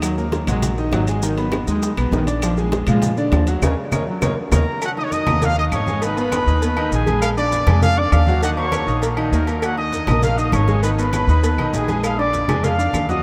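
A fragment of passionate, danceable salsa in Eb minor at 200 BPM opens with a bright trombone section playing a tight, vibrato-tinged second line in the background, while a brilliant grand piano with audible action noise, an up-front pizzicato upright bass with steel strings, and a full percussion bed of ringing low-tuned congas, tight high-tuned bongos and cowbell, metal-shell timbales and agogo bells, woody claves and grainy maracas drive the groove. During a band accent and drum fill, a clear, punchy trumpet section takes the melody from 4.5 seconds and the trombones stop at 4.7 seconds, with the trumpets sitting up front over the piano and bass. The whole band sits in a vast, echoing space with a long ambient reverb.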